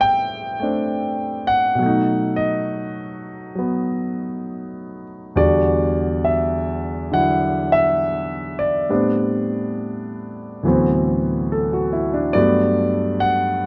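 A warm, deep-bassed concert grand piano plays this relaxed, playful solo jazz passage alone and up front, its swung eighths loosened by rubato as the harmony moves from Am9 through Em9 and D13 to settle on Gmaj9, captured by close, detailed microphones with a natural tone and light reverb in a short cut from a longer piece.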